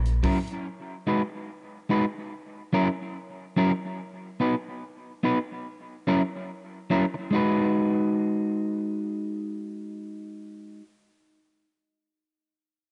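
An electric guitar at the edge of break-up, dark and scooped with a slightly broken tone, carries this spacious, deep dub reggae excerpt at 72 BPM in G# minor, playing fingered accompaniment up front through a dub echo from 0.2 to 10.9 seconds over chords moving between F#7, G#m7 and B. A vintage drum kit with a punchy kick and hi-hat, natural and small-room in character with a rolled-off top, sounds only briefly at the very start, from 0.1 to 0.6 seconds. Moderate spring reverb and a dark, warm production that tops out at 10.9 kHz give the swung sixteenth-note feel a deep, spacious setting.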